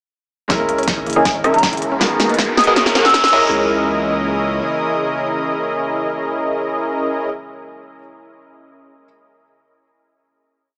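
A half-time beat at 159 BPM drives this emotional, bittersweet future bass piece in C# dorian, as a punchy layered electronic kick and a big-room kit of huge snare, crisp hats and rim clicks build through a drum fill and a background riser until the final hit lands at 3.5 s. Up front, detuned supersaw stabs play syncopated chords through a filter sweep and cassette-tape colour, joined by a deep saturated sub bass, a very quiet warbling pluck arpeggio, a breathy chorused pad and a brilliant grand piano with dub echo, while sidechain pumping moves the stabs, bass, pad and piano. A bright, woody baroque flute with straight tone adds short answering phrases, and the mix sits in a huge ambient reverb with a thin, small-speaker sound.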